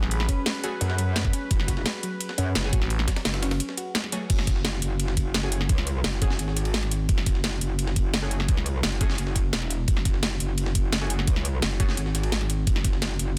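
A sweeping, phaser-tinged pad, bold orchestra-hit-like synth stabs and brief growls of thick FM bass open this dark, futuristic technical drum and bass excerpt over an up-front kit with a cracking snare and metallic hats, a gritty sampler-style breakbeat kit in the background and a knocking electronic kick, while a soft round pluck plays arpeggios until 4.2 s and an aggressive, overdriven wobble bass drives the low end from 0.8 s under a dense, heavily limited master.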